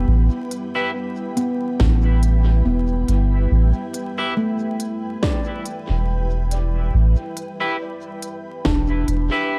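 A deep, round sub bass sits up front in this hazy ambient dub excerpt at 70 BPM in 4/4, with a light swing on the 16ths and an E minor chord throughout. A ringing handpan with sharp finger strokes plays arpeggios through dub echo from the opening, floating over a cloudy, detuned granular pad that holds mellow, blurred chords in its own reverb. An overdriven drum kit enters at 0.5 seconds, its woody snare and crisp hi-hats re-recorded in a large room and sent through dub echo. Clean, twangy electric guitar stabs follow at 0.8 seconds, coloured by lush chorus and echo, and a punchy, overdriven electronic kick joins at 1.8 seconds. The echo-heavy mix is dusted with vinyl crackle, giving the piece a deep, hazy atmosphere.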